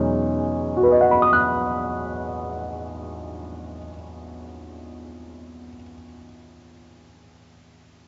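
Dulled by a cassette home recording, with its top end rolled off and a light reverb in a studio ambience, this short jazz fragment, cut from a longer piece, has a romantic, intimate mood. A present grand piano sits up front, comping through a slow swung 4/4 and opening on an Emaj13 chord. Its voicings span E2 to F#6 from 0.0 to 8.1 seconds.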